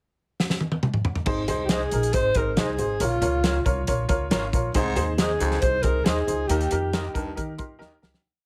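A straight, danceable backbeat soul groove from a fat-snared drum kit opens with a fill, and at 1.3 seconds an upright bass joins with a woody, syncopated line while a baby grand piano plays close-voiced eighth-note chords; from 1.7 seconds a twangy, slightly broken-up electric guitar chops on the backbeat. A breathy, mellow alto saxophone with vibrato and scooped notes sings short song-like phrases from a roomy distance, and a raspy, growling baritone saxophone adds low punctuation from 4.8 seconds. This joyful 1960s-style soul piece has a heavily compressed radio sound with light reverb, and it fades out from 6.5 seconds, with the piano playing a short fill near the end.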